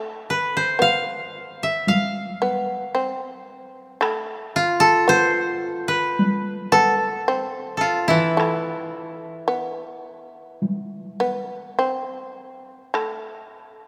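Steeped in a cavernous church reverb, this calm, austere passage of Japanese traditional chamber music drifts in rubato at 51-57 BPM in E miyako bushi, with a woody, fingerpicked koto melody up front from 0.3 s, a buzzing, plectrum-plucked fretless shamisen second line, a band-limited, vintage-toned taiko ensemble struck with hard sticks from 1.9 s, and a bright koto accompaniment on E3 joining at 8.1 s.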